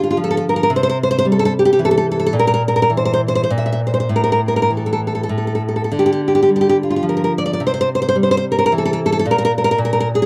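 A romantic solo classical guitar piece in 3/4, melancholic and passionate, moves with rubato between 97 and 114 BPM as a bright, up-front, fingerpicked nylon-string guitar, tuned to A4 = 439 Hz and touched with tape echo, spans A2 to E5 over Dm, C6, C7/Bb and A5 harmonies, heard in a dry, close 1970s-style studio sound with light reverb across this 10.3-second passage cut from a longer work.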